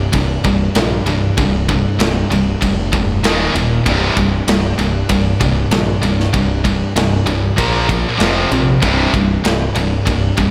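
Relentless and dark, this short heavy metal passage, cut from a longer piece, drives along at 97 BPM in a straight 4/4 in C minor. Two high-gain electric guitars play riffs together throughout, their bright, distorted, picked tone carrying a slapback echo while sitting in the background of the mix. A modern picked electric bass holds down the low end with a growly, direct sound. A tight metal drum kit enters at 0.1 seconds, sitting up front with kick drum, snare and ride cymbal, its medium-tuned snare and rolled-off top giving the acoustic kit a mid-forward punch. The power-chord movement centres on C5, touching Eb5, then Bb5 and F5 before returning to C5 near 8.8 seconds, all within a lush hall reverb that gives the recording a big arena sound.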